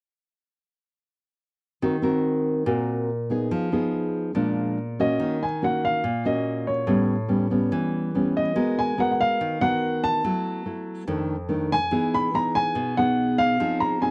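A dry, close recording with a 1970s studio character and light reverb frames this smooth, melancholic bossa nova fragment at 143 BPM in 4/4, set in Eb dorian before moving to Eb minor at 5.2 seconds. An up-front, thumb-plucked nylon-string guitar with a classical tone carries the accompaniment from 1.8 seconds through chords such as Ebm6, Bb7, A9 and Emaj7. A grand piano with audible action noise enters at 5.0 seconds, playing an intimate, natural melody high in its range.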